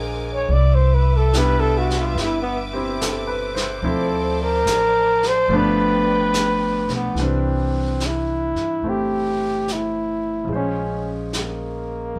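Jazz ballad with a romantic, late-night mood and a gentle swing, taken from a longer piece and played live in one room with moderate studio reverb. A breathy, whispered flugelhorn carries the melody up front with light vibrato and scooped notes, over clear grand piano chords, dark pizzicato upright bass and a vintage brush kit with a rolled-off top. A bowed studio string section holds smooth, sustained chords until 7.1 s, and later the harmony turns to a Bbm7 at 10.5 s.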